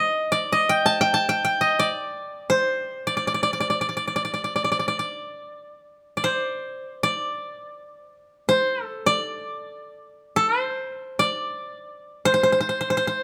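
Close, detailed microphones and a light touch of room reverb frame this 13.2-second passage cut from a longer piece of Japanese traditional chamber music. A solo koto, played with fingerpicks and placed up front, carries the whole performance with a bright, dry, woody tone, staying within the upper register from C5 to A5. The music unfolds in free time in D using the sen mode, giving it a calm, austere mood.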